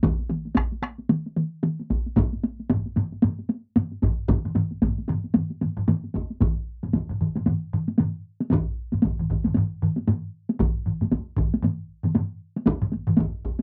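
Swung sixteenths in 4/4 drive this fragment of Japanese traditional taiko ensemble music, starting near 114 BPM and speeding up throughout, with a ceremonial, driving mood and a new section arriving at 6.4 s. Three taiko ensemble parts open together: two struck with hard sticks sit close and up front, one of them especially dry, while a third, played with heavy sticks, sits in the background. A fourth hard-stick taiko ensemble joins up front at 2.2 s with a small-room sound, all caught on a home cassette recording in a moderate booth ambience.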